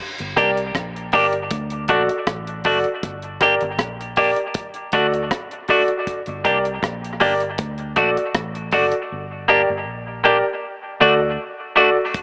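Dark, round, foam-muted bass and a dry, deep drum kit of hi-hat, tight kick and rim click open this hypnotic dub reggae fragment at 0.2 seconds, swaying between G minor and D. A bright, twangy, picked electric guitar and an intimate grand piano with audible action noise and long sustain enter at 0.4 seconds, both up front and trailing dub echo, the piano adding stabs. Everything sits in a moderate spring reverb with a lo-fi AM radio colour, and a part drops out from 9.1 seconds.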